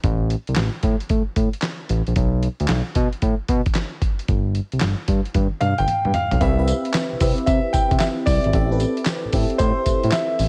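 New jack swing R&B at 113 BPM with a swung 16th-note feel, this bouncy, punchy excerpt opens on a gritty, thumpy sampler-style drum kit with a fat snare, handclaps and tambourine, riding up front alongside a smooth sawtooth-and-square synth bass with vibrato, with a drum fill from 5.3 to 6.4 seconds. A clear concert grand piano enters at 5.6 seconds carrying the melody through an analog delay, and at 6.4 seconds a lush, dreamy FM electric piano with a soft pad layer, treated with chorus and phaser, arrives over Cmaj7 moving to Am7. Light digital reverb gives the mix a touch of space.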